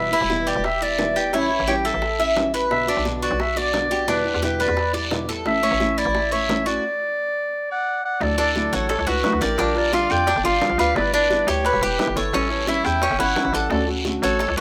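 A lively, straight 4/4 Cuban son and guajira groove, sunny and danceable, drives this rough home-demo cut from a longer piece, with a punchy classical-style clarinet up front over metallic double-string tres arpeggios, small thumb-plucked nylon-string guitar, a hollow, bouncy FM bass, soft-handed low-tuned bongos and raspy guiro, a brief stop at 6.8 s, and a gritty, growling trumpet joining in the background from 7.7 s before a second section begins at 8.2 s, all within light small-room reverb.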